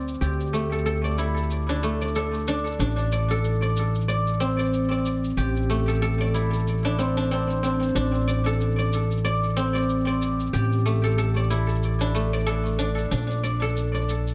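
Echo-heavy and lightly reverberant, this mystical, meditative stretch of organic downtempo cut from a longer piece sets a bright, silvery guzheng played with fingerpicks up front in ringing arpeggios through a low-pass filter and tape echo, beside a woody, pizzicato upright bass and a layered, tape-warm electronic cabasa entering at 0.1 seconds, with a swung 16th-note feel over chords moving from Dsus2 through A7sus4 to Bbmaj7 at 13.1 seconds.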